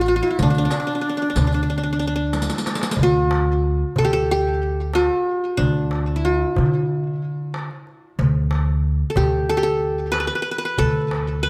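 This Arabic maqam ensemble piece in D maqam rast moves at a stately 92 BPM in straight 4/4, with a passionate, stately mood, and it is cut from a longer piece. The qanun carries the melody throughout, its plectrum-plucked triple strings sounding bright-edged and up front, touched with tape echo. A breathy, close-miked ney made of end-blown reed cane adds a soft-attacked second line with vibrato until 2.3 seconds. The pizzicato upright bass sits up front with a woody, dark tone from its steel strings. A vintage, band-limited riq shimmers with its jingles in the opening 3.0 seconds, while a crisp metal-shell darbuka struck with hard hands sounds distant, as if in a large room. After a drum fill, the music moves into a new section at 3.0 seconds, and the whole performance carries a light reverb.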